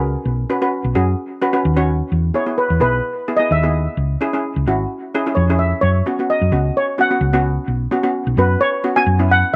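This bouncy, carefree calypso clip opens with a lead steel pan, cello pans and an electric bass all sounding together at 129 BPM in a straight 4/4, in B major. The lead pan carries the melody as a solo throughout, played with medium rubber sticks for a mellow, smooth, shimmering tone, with a slapback echo trailing it. Beneath it the cello pans, struck with hard rubber sticks, supply the accompaniment with a boxy, warm character and their own slapback echo. A hollow-body short-scale electric bass, fingered, adds a round, punchy, amped low end. The harmony moves from Bsus2 through E, C#m and F#sus4 before returning to Bsus2 at 7.7 seconds, and the dry outdoor recording keeps all three parts up front.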